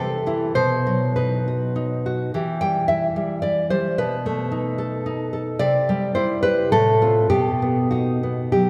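Romantic solo classical guitar music in 3/4, wistful and passionate, moving with a rubato feel somewhere between 97 and 114 BPM. A single nylon-string guitar, fingerpicked and full-bodied, plays throughout the 8.7-second passage, spanning A2 to G5 with a deep classical tone that sits up front. The harmony moves from C through B and Em to B7, then returns to C before passing through F/A and closing on B. A lush church reverb with a long 3.3-second tail surrounds the instrument, giving the sense of a performance in a church or concert hall. The passage is cut from a longer piece, ending on that B chord.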